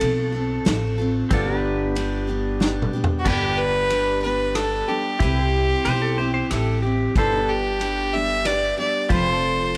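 Honky-tonk and classic country in an easygoing, sunny 3/4 at 92 BPM, set in G mixolydian and cut from a longer piece. A bright pedal steel guitar takes a short solo over the opening 3.3 seconds, played with fingerpicks and slide, with volume swells and a compressed, clean tone, and it returns briefly as a second line around 5.8 seconds. Underneath, a second pedal steel holds sustained chords in the background with a subtle chorus, while a full-bodied dreadnought acoustic guitar is picked as accompaniment, finger squeaks audible. An up-front pizzicato upright bass on gut strings sounds woody and thumpy, and a vintage drum kit in a small, pumping room brings a punchy kick, medium-tuned snare, rim clicks and dark cymbals, closing the solo with a drum fill. At 3.2 seconds a clear, boxy fiddle enters up front with light vibrato and tape echo, carrying an intense bowed melody over chords moving through F, G and C, all in light reverb.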